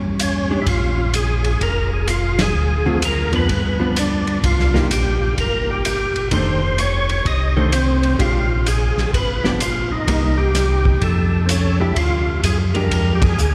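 A round, dark tonewheel organ opens this soulful, bluesy soul jazz organ trio excerpt with a lightly overdriven bass line through slow rotary speaker and chorus vibrato, soon joined by a thick, percussive second organ carrying the melody up front, a muffled, dry soul drum kit with dark cymbals and a tight kick, and a clean, picked hollow-body jazz guitar comping in the background, all swinging at 127 BPM in Bb mixolydian, bathed in a long cathedral reverb, and punctuated by band accents at 2.3 and 13.1 seconds.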